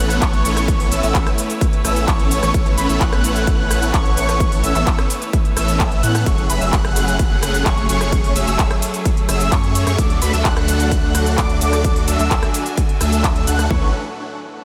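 Festival progressive house at 129 BPM in A major, this triumphant, euphoric drop cut from a longer piece pumps under sidechain as huge, lush, detuned supersaw chords with phaser, chorus and delay carry the riff over a deep, saturated sine sub bass, while a thick, bold unison lead with vibrato spins arpeggios high above, distant bowed symphonic strings sustain chords in the background, a big-room kit drives a punchy, up-front kick and toms, a tape-warm pop kit adds crisp hats, cabasa, handclaps, ride and rim clicks, and a dreamy, reverb-soaked mix moves from Aadd9 through F#madd9 to D before returning to Aadd9 at 13.7 seconds.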